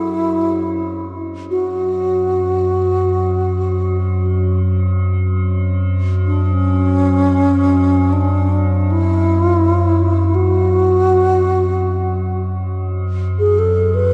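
This excerpt moves in free time, unmeasured and unhurried, as befits its meditative world-music character. A mellow wooden-headed alto flute carries the melody throughout, airy and expressive, with vibrato and tongued notes ringing through a delay, and it sits up front. Beneath it, a metallic, inharmonic drone sustains from 0.0 to 14.1 seconds, its eerie FM tone blooming with a slow attack and long release, thickened by chorus and its own reverb. Both parts share the foreground, and the whole is bathed in a cathedral reverb with a 4.5-second decay. The production leans dark and warm, giving the piece a haunting, contemplative stillness.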